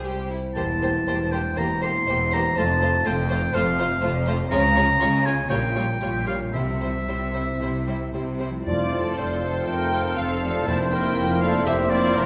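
A wet scoring-stage reverb surrounds this urgent, restless passage from a fast romantic orchestral movement, played with rubato. Lush bowed violins carry a focused melody alongside a distant second violin line, with expressive viola portamento, rich cellos, close double basses and a ringing, thumb-plucked concert harp playing arpeggios, while a bright, close-miked solo oboe sits up front from 0.5 s and timpani on calf heads enter at 6.5 s. At 8.7 s a new section begins as an airy flute ensemble, a mellow vintage bassoon, dark, tight French horns holding chords, trumpet stabs and a very quiet, roomy tuba join in.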